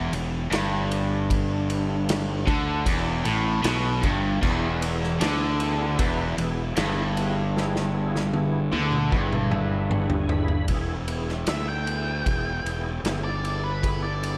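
Blues rock power trio with a southern rock edge, this gritty, raunchy excerpt sets a bright, double-tracked crunchy guitar riff over a growly fuzz bass and a punchy, dark-cymbaled vintage drum kit, adds a full tonewheel organ with slow rotary swirl in the background from 4.4 s, and after a drum fill and organ fill hands over at 10.7 s to a solo section whose dark octave-fuzz lead guitar with slapback echo enters at 11.5 s, all in a big arena sound with concert hall reverb.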